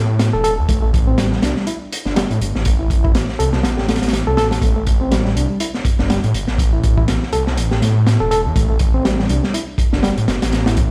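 A reedy electric piano riff with fast tremolo, tube saturation and digital delay opens alongside a thick, menacing detuned saw bass, and at 0.2 seconds a gritty, dark breakbeat kit with a punchy kick and high-tuned snare joins up front, driving this funky, raw excerpt of breakbeat in A minor at 122 BPM with a swung sixteenth feel, all heard through a big sound system in a bare stone room under vinyl crackle.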